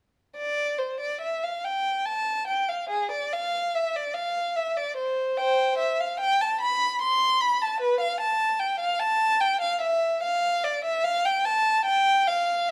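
Flowing and solemn, this cut from a longer baroque-style suite movement for unaccompanied violin unfolds in A minor at a rubato 73 BPM in 3/4, with a single up-front bowed violin, warm and expressive with vibrato, soft attacks and portamento, spanning G#4 to C6 from 0.4 to 12.7 seconds inside a moderate stone-room reverb.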